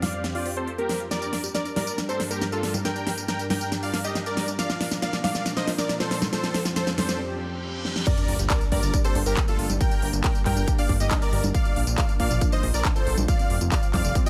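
Bittersweet and soaring, this uplifting trance excerpt in G minor at 138 BPM builds from the start with a huge, airy supersaw melody under a low-pass filter and tape echo. Alongside it from the outset play a catchy plucky lead, a lush chorused pad, background arpeggiated plucks and a big-room kit with a huge snare and crisp hats, while a very quiet riser and reverse cymbal lead into a break at 7.2 seconds. At 8.1 seconds the drop lands with a punchy electronic kick and a fat, wave-folded analog bass, whose sidechain pumping drives the Gm, Bb and Fsus2 progression under light reverb.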